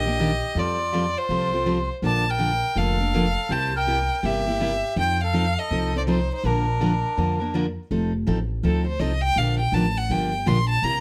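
A smooth, bowed violin with light vibrato carries the melody up front in this lively, swinging slice of acoustic string swing, joined by a reedy, breathy melodica on a second line until 7.5 seconds. Beneath them, a bright picked steel-string acoustic guitar moves through chords such as Ebmaj7, Bbmaj7 and C7, while a woody, thumpy pizzicato upright bass sits up front in the mix. From 7.9 seconds the violin takes a solo over F7 and Bb6, all captured with close, detailed microphones and light reverb.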